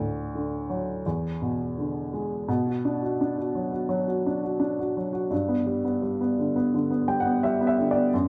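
Hopeful and heartfelt, this short folk passage moves at an unhurried 85 BPM in a straight 4/4. A lone upright piano carries it from 0.0 to 8.3 seconds, spanning D2 to G5 with a dark, woody tone, a touch of detuning and audible action noise that makes it feel intimate and close. The harmony opens on D and E7, then settles into Bm from 2.5 seconds before turning to G at 5.3 seconds. The piano sits up front in a large studio space, with a moderate reverb adding a tail around its natural, mellow voice. Captured live in one room and cut from a longer piece, the moment feels personal and warm.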